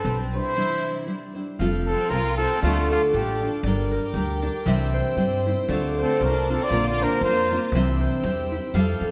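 A mellow trumpet opens the melody in F major, up front with light vibrato and a smooth top in a classical solo style. A lush symphonic violin section shadows it as a second line with soft attack and expressive portamento, while fingerpicked nylon-string guitar and a woody, thumpy pizzicato upright bass carry the accompaniment and bass. This mariachi-flavoured Mexican folk fragment moves at 117 BPM in 2/4, with a swung, rubato feel and a proud, festive mood. At 1.6 seconds a ringing, thumb-plucked concert harp adds arpeggios, and a rich, earthy studio violin section spreads sustained chords high above. The trumpet and symphonic violins fall away at 3.5 seconds, then return at 6.0 seconds over a progression that moves through Fadd9, Dm, Gm, Dm7 and Bbadd9 toward C. A wet recital hall reverb gives the whole ensemble a spacious, concert-like glow, and the clip is cut from a longer piece.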